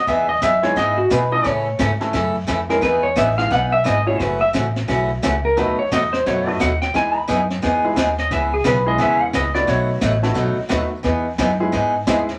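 A dark, clean lap steel guitar, played with fingerpicks and slide, opens this playful, swinging western swing country piece up front. It carries the melody over a woody, thumpy pizzicato upright bass until 10.7 seconds. A boxy picked archtop guitar with audible finger squeak and a vintage brush kit with a punchy kick and rolled-off top join almost at once, and a brilliant, polished upright piano with short sustain arrives at 0.6 seconds. The chords move from Emaj7 through A, F#m7, B7 and C#m7, then B7 leads back to Emaj7, heard in a snug, reverberant small room beneath a layer of vinyl crackle.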